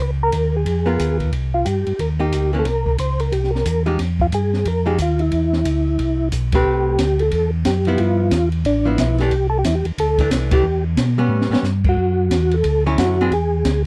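Soul jazz organ trio music with a late-night, soulful mood, swinging at 180 BPM in 4/4, heard here as a short cut from a longer piece that settles into A dorian at 6.7 s. A percussive tonewheel organ carries the melody with a soft, flute-like tone and second harmonic percussion, while a second tonewheel organ supplies a round, dark bass line; both sit up front with chorus vibrato and a slow rotary speaker. An open jazz drum kit, recorded acoustically in a small room, adds a high-tuned snare, punchy kick, hi-hat, ride and crash, and plays a fill from 11.3 to 11.7 s. A miked and amplified hollow-body archtop guitar comps with a picked, compressed, clean electric sound. The harmony moves through rich chords such as Db13, C7b9, Am9 and Dmaj9, with band accents marking the passage, all captured in a dry, close 1970s-style studio sound with little reverb.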